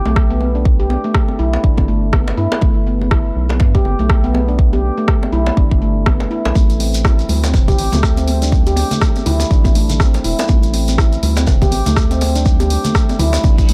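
Spiritual and driving, this afro house excerpt moves at 122 BPM in 4/4 with a 58% swing on the sixteenths, set in A minor and tuned to A4 = 439 Hz. A ringing, meditative handpan of nitrided steel plays arpeggios from A3 to G4 with sharp finger strokes, its mid-forward tone shaped by sidechain pumping, a low-pass filter and tape echo, while a round analog bass, sine and square wave with a wave-folded, evolving character, holds the low end from E1 to G2 under the same pumping. An up-front, deep electronic kick anchors the groove alongside a layered deep house kit with dark hi-hats and rim clicks, and a vintage, band-limited djembe struck with hard hands plays with them from the start. At 6.6 s the harmony moves from G to A5 as very quiet, bright congas and a grainy, mellow shekere join in a live-room setting. A background reverse cymbal appears at 13.6 s just before the cut, all within a small room ambience.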